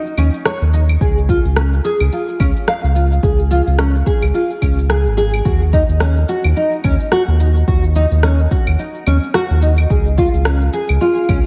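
Organic downtempo in Eb minor at 108 BPM, this hypnotic, warm fragment of a longer piece moves with a gentle 16th-note swing in 4/4. A fingerpicked nylon-string guitar opens at the very start with full-bodied arpeggios, its deep classical tone shimmering through analog chorus and a diffuse ambient delay. Electronic shaker, claves and rim click slip in almost at once, and a round analog bass follows, dark and up front, blending sawtooth and sine tones with ring modulation and a fast attack, sustained notes pumping against a sidechain. A deep electronic kick joins at 1.0 seconds to anchor the groove. The harmony drifts from Eb7(no3) through Db and Ebm, and the whole mix is dreamy and soaked in a lush hall reverb with a 2.1-second decay.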